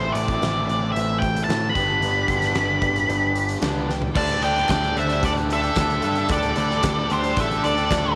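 Light reverb wraps this gritty, swaggering classic rock passage, cut from a longer piece and moving in a straight 4/4. Up front, an octave-fuzz lead guitar carries the melody with a dark, distorted bite, while a bright, double-tracked raw garage guitar drives a picked, overdriven riff beneath it. A direct, warm picked electric bass anchors the low end, and a big rock drum kit with a fat snare and punchy kick fills a big room, rolling into a fill at 3.9 seconds. Very quiet in the mix, a fingerpicked twelve-string acoustic guitar adds boxy, shimmering, octave-doubled texture with audible finger squeak, and a full tonewheel organ holds shouting sustained chords through a slow rotary speaker with chorus vibrato. As the chords move from Am to G and then to Dsus4 at 4.2 seconds, a smooth overdriven lead guitar slips in as a second line in the background, and crisp group handclaps join at 4.7 seconds.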